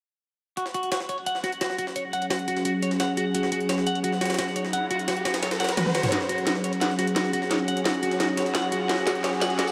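Aggressive and tense, this dark technical drum and bass runs at 173 BPM in a straight 4/4 and is cut from a longer piece. A sweeping, resonant sawtooth pad holds sustained chords up front, its detuned, warbling tone roughened by chorus and vintage 12-bit sampler grit, while a clean, picked electric guitar plays arpeggios through a low-pass filter and delay. Two drum kits drive the track together: a layered electronic kit with a cracking snare, metallic hats, tambourine and toms, all low-pass filtered and re-recorded in a small room, and a quieter jungle sampler-style kit, pitched up, compressed and overdriven, with a high-tuned snare and high-pass filtered hats. Filter sweeps move across the drums and pad in the opening stretch, a background riser enters at 4.5 seconds, and a drum fill at 5.8 seconds tips the music into a build-up where the guitar gets its own filter sweep. From 7.5 seconds a blurred, cloudy granular pad drifts in behind, and the whole mix is soaked in a huge, dreamy reverb.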